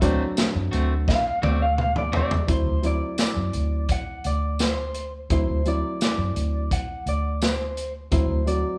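A straight-eighth soul blues groove in 4/4 at 85 BPM rides a crunchy, saturated breakbeat kit of kick, snare, hi-hat, toms and tambourine, with a round, foam-muted fingered bass holding the low end on a D7 chord in D mixolydian. A bright, clean semi-hollow guitar plays stabs until about 2.4 seconds, alongside a clean electric guitar solo that runs until about 2.5 seconds. From 1.1 seconds the drums play a fill while a slightly broken-up guitar through a small old amp takes the melody over a reedy, barky, overdriven electric piano. The soulful, gritty feel comes across as a band playing live in one room with moderate large-studio reverb, in this short excerpt cut from a longer piece.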